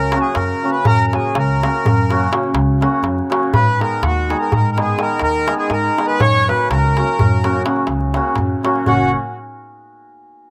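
A short cut from a longer exuberant, wild Balkan wedding-band tune in F# major and a brisk 11/8 at 248 BPM opens with a distant, roomy, classical-style clarinet melody high over a reedy, slow-beating accordion second line and a shimmering, ringing hammered dulcimer held up front, both carrying a slapback echo, with a woody, dark pizzicato upright bass below and a crisp, close, dry metal-shell darbuka struck with hard hands joining at 0.1 seconds, all heard in a dry outdoor setting as the chords move from F# to G# minor and back to F# at 6.2 seconds.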